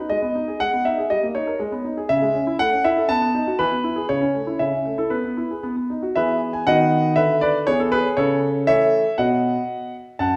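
Elegant and cheerful, this short passage cut from a longer classical-period piano sonatina moves at 119 BPM in a straight 2/4, centred on E major. A solo concert grand piano carries everything from 0.0 to 10.4 seconds, its clear, natural tone sitting up front with a deep bass and long sustain across a range from F#2 to A5. The opening phrase starts on G# minor and passes through C# minor, A and B7 before settling on E, then the music turns at 6.2 seconds into a second idea that moves from E through E7 and A toward a close on B. The piano is heard in a recital hall with a wet reverb, giving the graceful lines a spacious, resonant bloom.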